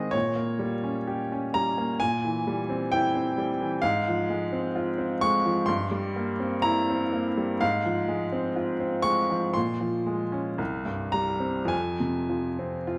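Melancholic and yearning, this short excerpt from a longer romantic nocturne unfolds on solo piano in F minor, moving in a free rubato that hovers between 50 and 67 BPM in 4/4. A baby grand piano sits up front for the full 13 seconds, its tone clear, intimate and natural, with long sustain and the audible noise of its action adding a close, tactile presence. The playing spans from C2 up to Db6, filling out a broad register. The harmony opens on a G diminished chord over Bb, leans through C7 and F minor inversions, touches Bb minor seventh at 9.6 seconds, and settles onto F minor at 11.7 seconds. A moderate recital hall reverb, lasting about 1.6 seconds, gives the instrument a sense of space around its nearby sound.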